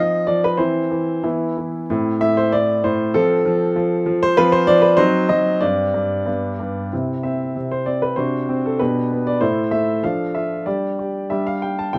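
A solo baby grand piano sits up front in an intimate, natural-sounding space with light reverb, its clear tone carrying long sustain and audible action noise. This excerpt from a classical-period sonatina moves at 96 BPM in 2/4, played with a rubato feel in a serious, elegant mood. The piano covers a range from G2 to A5 across the full 12 seconds, opening with harmonies that settle into C major from 4.4 s. The first section passes through A minor and a diminished chord before resting on a suspended G that resolves to G. From 6.9 s a second section begins on C and moves through a D7 over C, then A minor and D minor, before closing on a bare G fifth as the passage is cut off.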